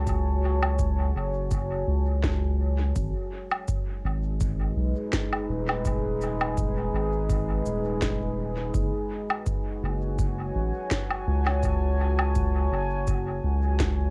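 Ambient dub with a deep, hazy mood, moving at an unhurried pace in a lightly swung 4/4. This cut from a longer piece opens with a dark, detuned pad built from sawtooth and sine layers with a sub octave, its slow-attack chords sustained under chorus and its own reverb, and it sits up front as it moves from F#madd9 to G#m7 at 3.0 seconds and back at 8.7 seconds. Beneath it from the very start, a soft, round sub bass with a fast attack holds the low end for the whole 14.1 seconds. From 0.1 seconds an analog-sounding electronic kick drum and a set of electronic cabasa, woodblock and woody snare carry the rhythm, both coloured by cassette tape, with the cabasa, woodblock and snare also sent through dub echo and re-recorded in a large room. The whole thing has the grainy intimacy of a home recording on cassette, framed by light reverb.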